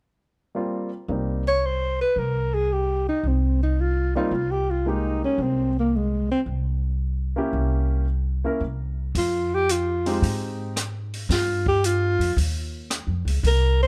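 A clear grand piano opens this late-night, smoky swing-and-bop excerpt at 0.5 seconds, its intimate sound carrying audible action noise as it lays down the accompaniment. A woody, dark upright bass joins almost at once with pizzicato lines, and a breathy alto saxophone takes the melody, close-miked and mellow with subtone, a soft attack and vibrato. The group settles into an unhurried 112 BPM in 4/4 with a swung eighth-note feel, the harmony drifting through minor and altered dominant colors. At 9.1 seconds an acoustic drum kit from a small room enters on hi-hat, rim click, a high-tuned snare and a boomy kick, its top end rolled off, lifting the music into a new section. The piano falls away at 10.7 seconds, leaving saxophone, bass and drums in a light reverb as the passage is cut off.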